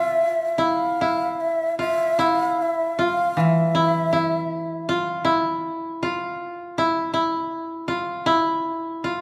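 Japanese traditional chamber music, still and meditative, drifts in rubato around 74-83 BPM as a breathy, bright bamboo shakuhachi with vibrato and tongued chiff carries the melody up front until 4.9 seconds, a dry, woody fingerpicked koto traces a second line through to 9.2 seconds, and a mellow lower koto adds accompaniment until 5.6 seconds, all set in a moderate recital hall reverb in this short cut from a longer piece.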